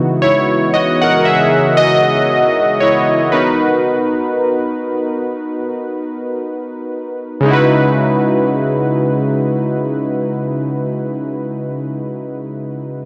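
Analog synth keys sit up front in this slow, moody R&B piece, their round, airy and slightly warbling tone carrying a bright, detuned sawtooth edge, a faint noise layer and a filter sweep. The keys play the accompaniment through the full 13.1 seconds, each note striking quickly and decaying, with chorus adding a vintage shimmer. A hollow, flute-like pad with chorus holds soft sustained chords beneath them only until 3.3 seconds, its mellow tone blooming slowly and fading with a long release. At 58 BPM in 4/4 with a light sixteenth-note swing, the music moves in C# dorian from C#m11 to Bmaj7 and back, giving it a longing feel. The dry, gritty sound of cassette tape and hardware recording, with little reverb, marks this fragment of a longer piece.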